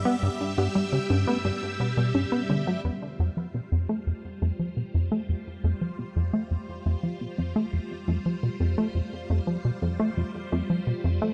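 A straight 4/4 pulse at 86 BPM in F major drives this luminous, expansive piece of ambient, sequencer-driven space music, cut from a longer work: a punchy, funky analog bass riff with delay sits up front, a warbly, lo-fi dusty pluck plays chorused, delayed arpeggios in the background under a filter sweep until 2.8 seconds, and a swirling, bright string machine with ensemble chorus and phaser holds sustained chords that fade in from 2.8 seconds as the harmony moves from G to Fsus2, inside a moderate plate reverb.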